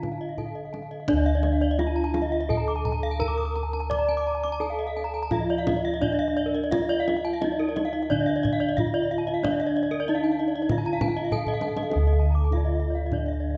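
Balinese gamelan in D pelog at 85-100 BPM, this hypnotic, shimmering excerpt sets a close, dry bronze metallophone melody struck with a wooden mallet against two bright, horn-mallet metallophones ringing out arpeggios with the shimmering beats of paired tuning, while mellow bossed gongs played with padded beaters carry a round, boxy bass and a tight kendang adds percussion, its fill at 11.5 s leading into a new section at 11.9 s, all set in a moderate scoring-stage reverb.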